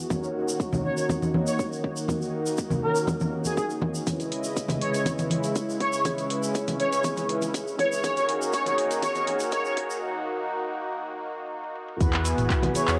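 An expressive, vibrato-tinged synth lead sings up front over a smooth, detuned analog pad, dark brassy synth stabs steeped in delay and cassette haze, a round, very quiet analog bass, a deep layered electronic kick, ringing low-tuned congas and a grainy tube shaker, with an afro-pop drum kit of handclaps, metallic hats and toms joining at 4.1 seconds, as this driving, earthy afro house excerpt builds under a spring-reverb filter sweep toward a break at 10.0 seconds.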